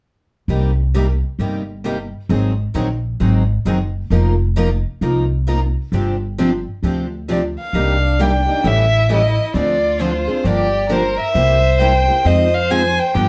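Swinging and virtuosic, this excerpt of acoustic string swing sets two bright, picked steel-string guitars and a woody, thumpy upright bass under a dark, intimate violin melody with plate reverb entering at 7.3 seconds, joined by a boxy second violin with expressive portamento at 7.7 seconds, all heard from further back in a reverberant studio room.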